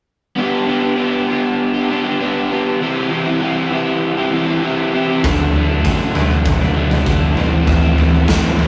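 A crunchy, double-tracked overdriven guitar opens this moody, cool indie rock excerpt at 0.4 seconds, picking a bright riff up front over a G, C, D and A minor progression. At 5.2 seconds a raw garage drum kit joins with a boomy kick, medium-tuned snare and toms, gritty and saturated in a pumping stone room with a rolled-off top, while a growling fingered electric bass sits very quietly beneath, direct and amped with its own overdrive. The rough rehearsal-room sound carries tube saturation and moderate reverb.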